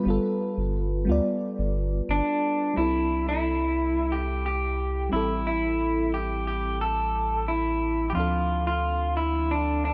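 Sunny and smooth, this short excerpt of sunset chillout moves at 89 BPM in C major, opening with a soft FM electric piano, treated with chorus, phaser and delay, over a round analog bass that sits deep and up front from 0.1 seconds. At 2.1 seconds an electric guitar through a small old amp picks out the melody, slightly broken-up, compressed and lo-fi with its own delay, and it sits up front as well. The harmony drifts from G9 into C6 as the piece shifts into a new section at 2.8 seconds, then moves on to Am7 and Dm7, all wrapped in light reverb with a dark, mellow top end.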